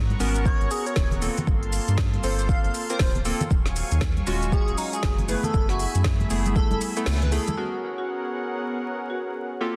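Dense, heavily limited and dusted with vinyl crackle, this hypnotic, moody deep house fragment sits in a light digital reverb, its swung 16ths giving the groove a lazy sway. A deep, layered electronic kick and a round, dark sawtooth-and-sine bass anchor the low end. A woody snare, smooth low-passed hats and a shaker roll along with bright, hard-handed congas tucked in the background. A detuned, soft-attack pad holds minor eleventh chords with chorus, tremolo and sidechain pumping, while wave-folded square-and-sawtooth keys fire decaying, filter-swept stabs through tape echo. Above them, an airy, dreamy lead carries the melody with vibrato, a moving notch and a cassette-tape haze. At 7.1 seconds a band accent lands as the kick drops out, and at 7.6 seconds a dark, smooth marimba with medium hard mallets takes over the melody, trailing tape echo.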